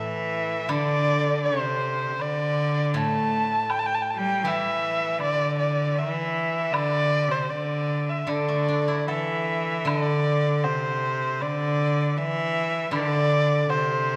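Chinese traditional music for a small chamber ensemble, this graceful, pastoral excerpt moves at 78 BPM in 4/4 with a rubato feel, set in the D shang mode and tuned slightly high, to A4 = 441 Hz. A single bowed erhu carries the melody up front, its tone soft-edged and intimate with light vibrato, gentle attacks and sliding portamento between notes. Beneath it, one bowed cello plays a focused, clear second line, also close and touched with vibrato. A steel-string zither played with fingerpicks supplies a ringing, silvery accompaniment at a lower level, and a woodblock sits in the background from 0.7 to 13.9 seconds, its acoustic sound paired with dark cymbal colour. The ensemble is heard in a reverberant recital hall, and the passage shifts into a new section at 9.9 seconds before ending at 14.2 seconds as a fragment of a longer piece.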